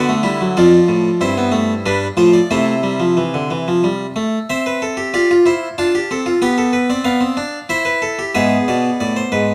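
A solo harpsichord opens this short excerpt, its plucked, bright tone from a single set of strings sitting up front in the sound. The music is a baroque-style fugue in four parts, moving in a straight, elegant triple metre with a joyful character. The French-style instrument covers a range from F2 up to A5, with harmonies settling on C at 2.5 seconds before a contrasting passage begins at 4.5 seconds. The opening material returns at 8.4 seconds on an E7 chord, and the clip is cut from a longer piece. A moderate stone room reverb gives the harpsichord a clear sense of space around its tone.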